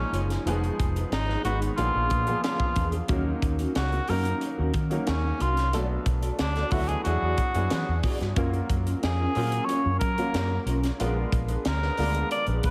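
A present, lightly vibrato-tinged cor anglais sings a classical-style lead over smooth vintage grand piano, softened with analog chorus and slapback echo, and a dark, round, foam-muted fingered electric bass from the first moment of this urban, bittersweet slice of polished 1980s jazz-funk pop at 91 BPM, as a tight funk drum kit with a high-tuned snare and a clean, fingered electric guitar riff with ensemble chorus sitting in the background join at 0.1 seconds, all moving through jazzy changes like Fm7b5, Bb7b9, E9 and Gbmaj7 within a concert-hall reverb that gives a big arena sound.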